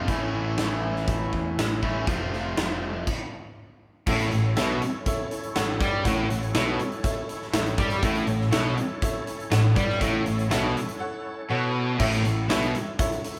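Lightly overdriven tonewheel organ chords with key click, chorus vibrato and a slow rotary speaker sit in the background as a bright, double-tracked hollow-body guitar riff, a growling electric bass and a huge, punchy arena drum kit set up a sunny, driving classic rock groove. After a brief stop, a thick, up-front fuzz guitar riff and a metallic, jangly tack piano join at 4.1 seconds. The organ falls away at 12.0 seconds, after a break, while the band carries on in a live-room sound with light reverb.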